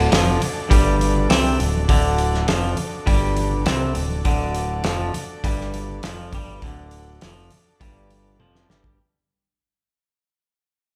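Psychedelic rock with a trippy, hazy mood, this excerpt moves at an easy, straight pace, cut from a longer piece and fading out across its full nine seconds. A clean, twangy electric guitar sits up front playing a picked riff, while a growling electric bass with overdrive anchors the low end beneath it. The drum kit is acoustic and cloth-damped, with a thuddy, fat snare, tight kick, rolled-off top, hi-hat and toms, placed prominently in the mix and closing with a fill from 8.4 seconds. In the background, a vintage combo organ holds sustained chords with a buzzy, overdriven tone and light vibrato, and very quiet congas with a thick, damped skin add compressed, saturated percussion from 0.3 seconds. The band sounds as though it is playing live together in one room, bathed in a moderate large studio reverb.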